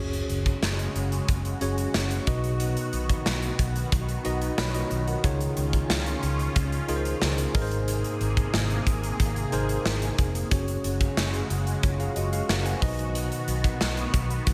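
A small room ambience with light reverb frames this glossy, nostalgic slice of 1980s-style pop, cut from a longer piece and moving at 91 BPM in a straight 4/4. Up front, a big rock drum kit with a punchy kick, medium-tuned snare and hi-hat carries a gated reverb that gives it a large, booming presence from 0.1 seconds onward. Beneath it, a vintage muted fingered electric bass sounds dark, round and foam-muted, anchoring the low end. A barky tine electric piano, clean and heard through its built-in speakers, plays the accompaniment and adds a short fill between 4.2 and 5.2 seconds. A lush unison pad of detuned sawtooth and square waves with a sub octave holds sustained chords with a slow attack and long release, its bright, thick tone colored by chorus and phaser. The harmony moves through open, suspended and added-ninth chords, Gbsus2 to Cb to Dbadd9 to Abadd9, before circling back.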